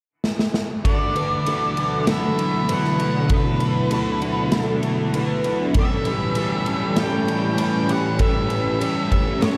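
A straight 4/4 pulse at 98 BPM opens with a punchy, up-front rock drum fill before a blissful, hazy shoegaze and dream pop passage in D major unfolds, where a crunchy overdriven guitar riff and a twangy, compressed electric riff with reverse reverb enter at 0.8 seconds, joined by a dark fuzz lead melody soaked in tape echo and shimmering twelve-string acoustic arpeggios, while a deep, detuned ambient pad with chorus settles in beneath from 1.6 seconds as the harmony moves from D69 to A7 at 5.8 seconds in a dark, small-room production.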